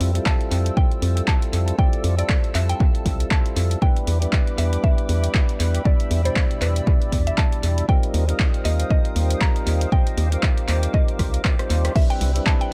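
Deep house at 118 BPM with a soulful, relaxed swing, this echo-heavy clip pairs an up-front, dark organ-like FM bass and a punchy, tape-warm electronic kick (entering at 0.3 s) with an analog drum machine's crash, handclaps, hi-hat and rim click through tape echo, while a clear tonewheel organ stabs through a slow rotary speaker, a hollow, flute-like pad pumps in the background and a woody, mallet-like synth pluck carries the melody over Fmaj9, Em7 and Eb69 until a drum fill from 11.2 s and a band accent at 11.8 s lead into Cmaj7.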